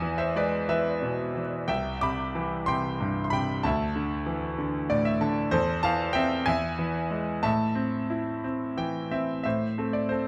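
A bright concert grand piano opens this brief classical excerpt alone, sounding a lyrical, melancholic line in A minor that sits up front and present in the mix. Moving in a rubato 6/8 at roughly 58-64 BPM counted in dotted quarters, the solo ranges from C2 to D6, pairing a deep bass with a brilliant yet slightly worn upper register. The harmony travels from E through C and Dsus2 before settling on Am/E, E and finally Am near 7.4 seconds, giving the passage a reflective, searching character. Short piano fills appear at 4.6 and again at 8.4 seconds. A moderate scoring stage reverb with a 1.6-second decay surrounds the instrument, lending the fragment, cut from a longer piece, a sense of space.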